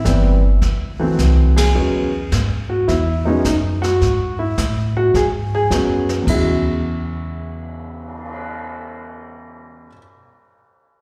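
A playful, relaxed jazz piano trio opens together, the upright piano carrying the melody over pizzicato upright bass at a swung 106 BPM in 4/4, in E major and tuned slightly below standard pitch. The piano sounds intimate and close, its action noise audible, with plate reverb and a slapback echo around its phrases. The bass sits up front with a woody, dark steel-string tone, holding the low register beneath the chords, which move from a rootless Am7 to D9 and settle on E69 by 1.8 seconds. Played softly behind them with brushes, the kit offers dark cymbals, a medium-tuned snare and a boomy kick, with a crash, a cymbal swell, hi-hat and ride in the mix, plus its own slapback echo. The band hits a shared accent at 1.5 seconds, and the music shifts into a new section at 6.3 seconds, the drums dropping out at 8.4 seconds as piano and bass carry on. Captured as a live gig through the venue's PA, the sound carries a light recital-hall reverb, and the passage is cut from a longer piece.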